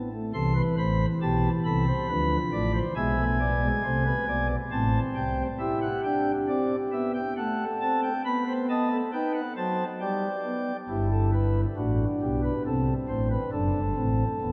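A solo pipe organ on soft flute stops carries this baroque-style four-part fugue in A minor, sitting up front with a gentle, romantic voicing. The piece moves at 68 BPM in 3/4 with a straight feel, and the mood is elegant and lively despite the unhurried pace. The organ spans a broad register from a deep E1 up to C6, with the voices weaving through harmonies that begin on A minor and pass through diminished and dominant colours before settling toward G. Around 10.9 seconds the music turns to a new section built on E minor over G, then A minor over C and a D7 chord. A cavernous cathedral reverb with a long decay of 5.9 seconds surrounds the flutes, giving the counterpoint a soft, blooming halo. This is a short cut from a longer piece, ending at 14.5 seconds.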